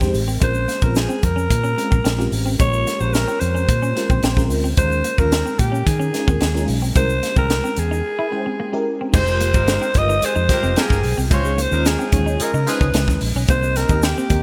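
A breathy, raspy alto saxophone carries the melody up front with vibrato, over a slick, bittersweet 1980s jazz-funk pop groove in F minor at 110 BPM, driven by a crisp fusion drum kit with a punchy kick, high-tuned snare and bright cymbals, and a round, foam-muted fingered electric bass. A lush, dreamy FM electric piano with a soft pad layer adds tremolo and ensemble chorus, while a clean semi-hollow electric guitar riff sits in the background with subtle chorus, alongside a grainy tube shaker. A break comes at 8.0 seconds, and a tight, punchy horn section in octave doubling joins with a second line from 9.1 to 12.9 seconds over chords moving from Fm9 to Dbmaj9, all wrapped in bright digital production with light reverb in this excerpt from a longer piece.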